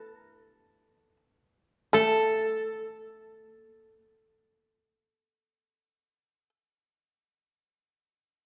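A koto and a shamisen open together in free time, the koto's dry, woody fingerpicked melody moving between A4 and B4 over the shamisen's buzzing, percussive plectrum line sitting on A3. This calm, austere fragment of Japanese traditional chamber music slows over its first 1.9 seconds before a new section begins, with both instruments playing up front until 6.5 seconds. A moderate reverb lends the fretless shamisen and the koto a sense of space, within a dark production that carries a gentle warmth.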